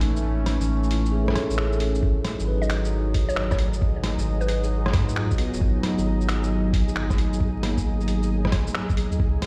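This melancholic, wistful future garage fragment at 134 BPM opens on a warbling, nostalgic tape-like pad with chorus and 12-bit sampler grit, a round sine sub bass up front, and a bell-like tine electric piano with delay in the background. A muffled, pitched-down lo-fi kit of finger snaps, hi-hat, rim click and shaker swings on the 16ths, while the pad, bass and piano pump against the sidechain. At 2.0 s a compressed, thumpy electronic kick arrives as the harmony moves from A to G#m7, a woody FM mallet pluck carries a brief melody from 2.6 s, and a grainy, flickering granular texture drifts in behind, all set in a large reverberant space dusted with vinyl crackle, as if played through a big system in a bare room.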